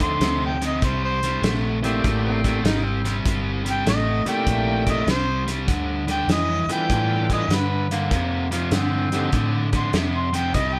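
A swung shuffle groove from a fat-snared soul drum kit and a dark, round, muted fingered bass drives this swaggering, soulful electric blues excerpt, where a mellow harmonica with scooped notes carries the melody over a biting overdriven guitar riff and a shouting tonewheel organ with key click and slow rotary speaker that drops out at 9.3 seconds, while a clear tenor saxophone adds a second line from 1.8 seconds and again from 7.9 seconds, all played live together in one room with light reverb.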